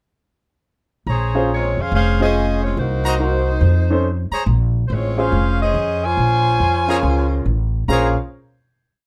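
Clear, close-miked trumpet-section stabs in syncopated drop-2 voicings and a woody pizzicato upright bass in a two-feel open this short, dramatic, swinging jazz piece in Bb minor at 141 BPM, joined at 1.3 s by grand piano comping in rootless voicings and at 1.5 s by a warm, smooth saxophone section with vibrato carrying a motif-based melody in four-part block harmony up front, the harmony moving from Bbm9 through Cm7b5 and F7b13 back to Bbm9 in light reverb before a final chord at 7.9 s.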